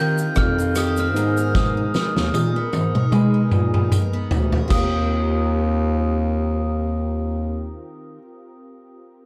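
A bell-like glockenspiel melody, played with soft plastic mallets and bathed in lush chorus and tape echo, opens this dreamy, hazy indie bedroom-pop fragment. Alongside it are a smooth, mellow bass clarinet up front, a bright picked steel-string acoustic guitar with a warbly pitch drift, and detuned, nostalgic lo-fi synth keys in the background. A roomy, distant drum kit with a fat snare and dark cymbals joins at 0.2 s, plays a fill from 1.5 s and stops at 4.9 s, while a jingly tambourine sits quietly behind it, all over a lightly swung Eb6/9 to Abm(add9) progression in a warm production with little reverb.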